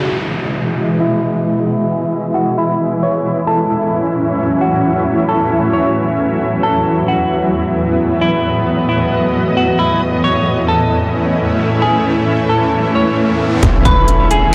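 Floating and blissful, this short atmospheric cloud-rap passage in half-time drifts over a slow-moving chord progression that begins on Emaj7 and returns to it at 13.6 seconds. A shimmering, ethereal pad carries the sustained chords throughout, its detuned, granular tone treated with chorus, reverb, sidechain pumping and a low-pass filter, sitting bright and up front in the mix. Meanwhile, a dark, clean semi-hollow electric guitar plays a fingered melody in a narrow upper register, softened by a low-pass filter and trailed by tape echo. A filter sweep runs across the opening section, with electronic downlifter, riser and impact effects heard at the start and again near the close. At 13.6 seconds the impact lands as a trap kit with a hard-clipped kick and crisp hats arrives alongside a deep, boomy 808-style bass, giving a brief glimpse of the beat before the cut at 14.5 seconds, all within a lightly reverberant space and a blown-out, overdriven recording.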